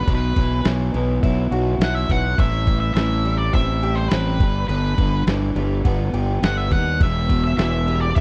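A fuzzed, round electric bass sits up front with overdrive, driving this moody, restless indie rock excerpt at 104 BPM in a straight 4/4 through chords of Bsus4, Am7, G6 and Em. A dark octave-fuzz lead guitar carries the melody with distortion and slapback echo, over a lo-fi overdriven garage guitar riff with subtle chorus and a very quiet, twangy twelve-string electric riff. A muffled, pitched-down sampler-style drum kit with a thumpy kick, medium-tuned snare and crash cymbal enters at 0.1 seconds, all captured in a dry, close 1970s-style studio sound.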